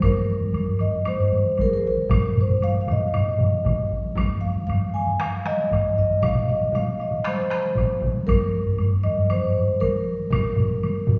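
A steady straight 4/4 pulse at 117 BPM drives this powerful Japanese traditional taiko ensemble piece in Bb suspended pentatonic, cut from a longer work, where several taiko groups struck with heavy sticks (one distant in a large room, one close, one compressed and saturated, and a small-room group that joins at 2.1 s) pound beneath a dark, smooth, ringing vibraphone melody played up front with medium mallets and motor off between Ab4 and Ab5, while a faint, woody, band-limited woodblock sits low in the mix and a wet recital-hall reverb lends a churchlike spaciousness.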